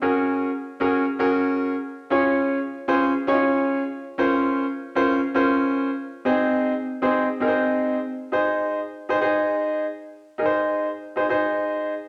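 A clear concert grand piano plays alone from 0.0 s to 11.9 s in this danceable, warm soul fragment at 116 BPM in straight 4/4, tuned to A4 = 436 Hz. Sitting up front with a natural tone and deep bass, the piano works between C4 and Db5 through Gbadd9, Db, Bbmadd9 and Ab chords, and a new section begins at 8.3 s. A wet large-studio reverb with a 1.3-second decay surrounds the piano.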